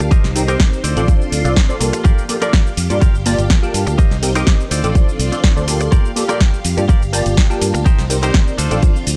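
Filtered disco house at 124 BPM in G minor, a groovy, nostalgic cut from a longer piece, where a punchy, up-front electronic kick and a house kit of punchy snare, bright hats, rim click and shaker groove alongside a warm, tube-saturated fingered bass, while a nasal, detuned polysynth comps Cm7, Dm7 and Gm7 with chorus and phaser, a twangy clean guitar riff carries 12-bit sampler grit, and a lush string machine sits mellow in the background, the synth, strings, guitar, bass and hats pumping to the kick in a dry, gritty hardware sound.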